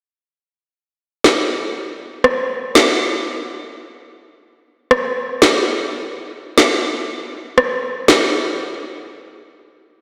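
An up-front, woody electronic snare drum and rim click enters at 1.2 s and plays in free time until 8.2 s, its hypnotic, tough dancehall feel drifting through a dreamy mix soaked in lush hall reverb, in this short excerpt cut from a longer piece.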